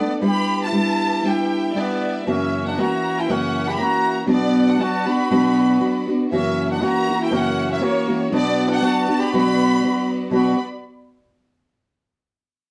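A passionate, dramatic slice of Mexican folk music in the mariachi tradition opens with four parts sounding together from the first moment, at 119 BPM in a swung 2/4 in B minor. A lush symphonic violin section carries the melody high above, bowed with a focused, smooth top and singing vibrato. Beneath it, a mellow trumpet plays a classical-style second line that sounds distant and roomy. The fingerpicked nylon-string guitar sits up front with an acoustic, classical accompaniment, while a rich studio violin section holds sustained chords close but in the background. The harmony moves from G6 through F#7 to Bm, with the second section arriving at 6.3 seconds, and a studio reverb places the ensemble further back in the room before the piece is cut off around 10.6 seconds.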